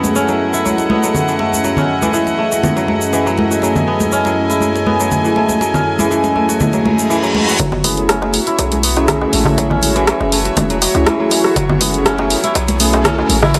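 This driving, hypnotic afro house cut at 121 BPM in F# dorian opens on an F#m7 bed of floating bowed strings, crisp fingerpicked kora arpeggios with analog delay, and round, detuned synth brass stabs, all three pumping against a deep house kit with dark, up-front hats, ringing hard-hand congas and a grainy egg shaker that plays until 7.6 seconds. A reverse cymbal at 6.9 seconds, backed by a riser and noise sweep, leads into a build-up from 7.6 seconds, where a boomy 808-style bass, a punchy overdriven kick sitting in the background and a small, soft-handed clay-shell darbuka join while the kora takes a filter sweep. The recording sounds dry and gritty, with light reverb and lossy compression artefacts.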